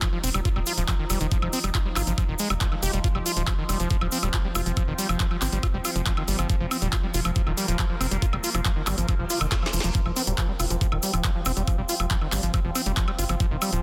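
Driving and hypnotic, this psychedelic trance excerpt at 139 BPM in straight 4/4 pairs a knocking, up-front electronic kick and an overdriven kit of woody snare, bright hats, handclaps and woodblock with a tight, dark sequencer bass, a squelchy, gritty acid bass riff with delay, a grainy cabasa and a chorused drone of sustained chords with moving overtones in the background, the acid bass and the drone pumping against the kick, while a very quiet reverse cymbal and zap at 9.3 seconds lead into a drum fill in a dense, heavily limited, dry mix.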